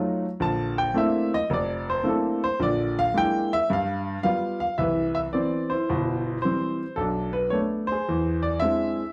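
A wet studio reverb gives this short excerpt a sense of distance, as if heard from further back in the room, yet the grand piano itself comes across as clear, intimate and up front, with a natural tone and audible action noise. It is a solo jazz piece at 110 BPM in 4/4, swinging its eighth notes, and the mood is warm and playful. The piano carries everything alone across the full 9.1 seconds, spanning from F1 up to A5. The opening passage drifts through lush Bbmaj9#11 and Bb7#11 colours before a G7 sets up the arrival in C major at 4.8 seconds. From there the harmony moves from Cmaj7 through Bm13 to E7b13, leaving the phrase hanging as the clip cuts off mid-piece.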